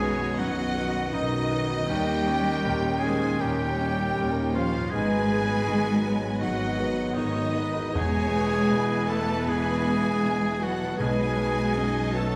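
Lush and warm, this orchestral passage sits in a wet scoring-stage reverb, a hopeful, moving film-score cue in E major at 79 BPM in 4/4, played with a rubato feel and cut from a longer piece. A focused symphonic violin section carries the melody with vibrato and a smooth top, while a second, more distant violin section, a clear, roomy solo oboe, a mellow solo clarinet and an airy small flute group weave supporting lines, the second violins and flutes sitting in the background. Beneath them, a brilliant baby grand piano and a very quiet studio viola section, expressive with portamento, provide accompaniment, and a close-miked French horn section holds sustained chords. A fingerpicked concert harp rings softly with arpeggios, and the bass is anchored by an intense bowed double bass section and a soft-attacked, expressive cello section, the most prominent of the strings. The harmony moves from B through D#7 and G#m7 to E and back to B, and at 8.0 seconds round, soft-malleted timpani join in the background until 12.1 seconds.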